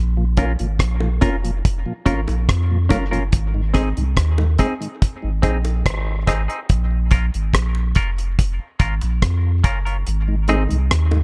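Hypnotic and deep, this dub reggae excerpt moves at a slow 71 BPM in straight 4/4, sitting in Bb minor and cycling between Bb minor and Ab chords. A round, sine-like sub bass anchors the groove up front from the very start, its notes sustained with a fast attack, while a damped 70s drum kit sounds dry and airy, with a tight kick, hi-hat and rim clicks. A semi-hollow electric guitar, clean and compressed, carries a warbly pitch drift and dub echo, and a clear tonewheel organ with chorus vibrato sits in the background. High-tuned bongos played with hard hands add a live-room snap behind them, also treated with dub echo. A filter sweep runs from 3.3 to 10.1 seconds, after which the kick drops out for the final stretch, all within a dark, warm small-room sound.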